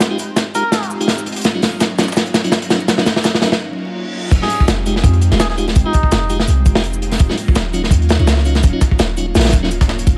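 A crunchy, saturated breakbeat kit up front with kick, snare, hi-hat and crash cymbal opens this nostalgic, atmospheric drum and bass excerpt at 167 BPM with a light swing, playing a drum fill through the first 3.6 seconds over a deep, boomy 808-style bass and an airy, breathy pad holding sustained chords in the background. A second, sampler-style breakbeat kit sits further back, pitched up and tape-toned with hi-hat, shaker and snare, while a piping tonewheel organ with key click, a stopped rotary speaker and dub echo adds stabs. The harmony moves between Fm9 and Ebm9, and a soft, veiled trumpet with a cup mute and light vibrato gives a brief phrase at 0.5 seconds. After a short break marked by an electronic reverse cymbal, the drop arrives at 4.3 seconds, and the muted trumpet returns with its dub echo at 4.4 seconds for a melody that runs until 6.4 seconds. Vinyl crackle and a light small-room reverb lend the whole a dusty, intimate sheen.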